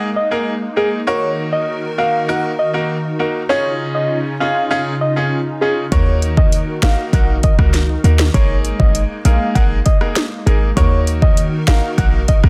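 Sultry and tough, this dancehall excerpt moves at 99 BPM in Eb minor, cut from a longer piece. A bright baby grand piano with audible action noise and short sustain plays accompaniment throughout, while a hollow, flute-like pad holds sustained chords beneath it, treated with ensemble chorus and sidechain pumping. Above them, a round, keys-like FM synth lead carries the melody with gentle vibrato, chorus and delay. At 5.9 seconds a punchy, tight 808-style bass and an overdriven electronic afro-pop drum kit arrive up front, bringing a deep kick, sharp snare, rim click and metallic hats. The chords cycle through Absus2, Ebm and Dbadd9 in a dense, heavily limited modern mix with light reverb.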